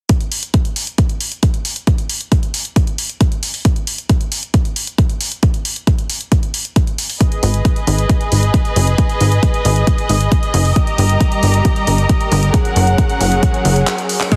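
A straight 4/4 pulse at 135 BPM drives this emotional, bittersweet uplifting trance excerpt in G# minor, with a punchy, tape-warm electronic kick up front and a layered house kit of crash cymbal, handclaps and hi-hat set further back in a large-room ambience, before a rich, bowed studio string section with smooth vibrato enters at 7.2 s on low-pass-filtered, sidechain-pumped chords moving from G#m through D#/G to F#add9, a funky sawtooth analog bass joins at 7.4 s, and after a brief drum fill a bright, detuned unison pluck arrives at 14.3 s, the mix carrying a heavily compressed, radio-like digital sheen.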